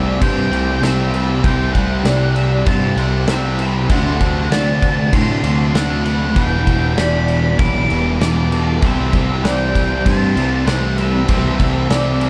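Hazy and dreamy, this short cut from a longer rock piece sits between shoegaze and dream pop, moving at a straight 98 BPM in 4/4 through C6, D7, Em7 and back to C6. An octave-fuzz lead guitar carries the melody with a dark, distorted tone and analog delay, while an up-front, overdriven fuzz bass plays beneath it. Behind them stands a wall of picked guitars: a thick fuzz guitar with analog chorus, a raw, lo-fi garage guitar with overdrive and reverse reverb, and a bright, double-tracked overdriven guitar, all playing riffs. A twangy, slightly broken-up guitar through a small old amp adds arpeggios with ensemble chorus and delay, and a very quiet vintage string machine with a sawtooth viola sound holds slow-attack chords. A loose indie drum kit comes in at 0.2 s, with a tight kick, a medium-tuned snare, dark cymbals and a pumping small-room sound, and the whole mix is soaked in plate reverb.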